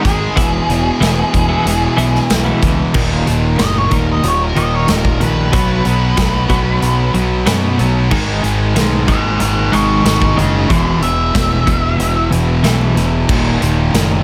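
Brooding and cathartic, this quiet-loud alternative rock excerpt in Eb phrygian moves at 93 BPM in a straight 4/4, with a dark, fuzzed octave lead guitar soloing from 3.0 seconds over warm, clean, tremolo-washed twelve-string arpeggios, a bright cranked stack riff alongside a thick fuzz guitar riff in the background, a growling overdriven fingered bass, and a huge, up-front arena drum kit with a boomy kick, all in light reverb, moving through chords from E to Ebm.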